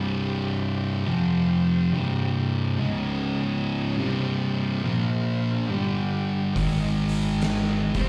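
Heard live through a club PA with light reverb, this ominous, sludgy stoner and doom metal excerpt in C minor moves at 70 BPM with a swung 4/4 feel, as two thick, up-front fuzz guitars play a distorted riff over a bright, shouting tonewheel organ holding sustained chords in the background through slow rotary speaker, overdrive and chorus vibrato with audible key click, until a growly fingered electric bass and an oversized low-tuned drum kit, with its fat snare, punchy kick and gritty, saturated stone-room sound, enter at 6.6 s.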